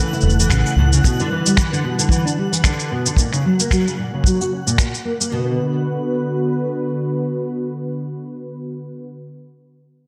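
Fingerpicked nylon-string guitar arpeggios with audible finger squeak carry this delicate, wistful folktronica piece at 112 BPM in B minor, threaded through filter sweeps alongside a smooth, detuned sawtooth analog pad holding sustained chords, a twinkling granular shimmer up high, muffled pitched-down shaker and finger snaps, a punchy kick, and a round, foam-muted dub bass that appears only briefly, before the pad carries on alone from 5.6 seconds in a dreamy mix soaked in hall reverb.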